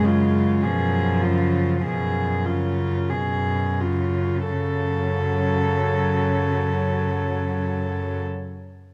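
Classical passage for four bowed cellos, melancholic and solemn, unfolding in a rubato 4/4 that slows through its first 4.5 seconds before the harmony shifts at that point. The melody cello floats, pure and distant yet up front. A second line with light vibrato and an airy bow sits close and intimate beside a soft-attacked accompaniment and a smooth-topped bass, each part played sul tasto. Close, detailed microphones capture the warm blend within a moderate recital hall reverb.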